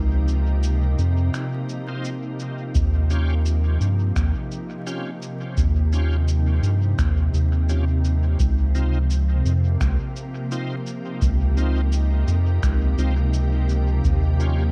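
Hazy and peaceful, this ambient dub excerpt moves at 85 BPM in 4/4 with a light sixteenth-note swing, drifting between Dbmaj9 and Eb9 over a dark production dusted with vinyl crackle. A round, wave-folded analog bass with tube saturation sits up front beneath a soft, detuned organ-like pad bathed in ensemble chorus and its own reverb, while muffled, pitched-down shaker and finger snaps trail dub echo from 0.3 seconds. A shouting, lightly overdriven tonewheel organ adds stabs through chorus vibrato, slow rotary speaker and dub echo from 1.9 seconds, and a deep, tape-warm electronic kick drum enters in the background at 2.8 seconds.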